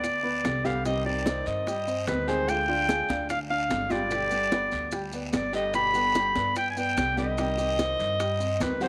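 Cuban son and guajira at 147 BPM in C harmonic minor, this danceable, warm fragment puts a smooth-topped classical clarinet up front over fingerpicked nylon-string guitar, dark, mellow piano arpeggios and a woody, thumpy pizzicato upright bass on gut strings, while ringing high-tuned congas, raspy guiro and grainy maracas sit in the background and round bongos stay very quiet, the chords moving from G through Cm and Ddim back to G and Cm, all within a moderate echo-chamber reverb.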